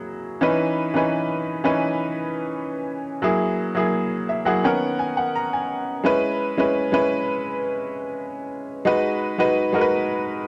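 A straight 4/4 pulse at 85 BPM carries this silky, cinematic soul excerpt in C# dorian, played by a solo grand piano whose clear, worn tone sits up front with the wear of cassette tape. Moving through C#m9, F#9 and Bmaj9 before settling into C#m7 at 6.0 seconds and G#m7 at 8.9 seconds, the piano adds a fill from 3.9 seconds and another near 10.3 seconds. A moderate spring reverb and small-room ambience surround the home-cassette recording.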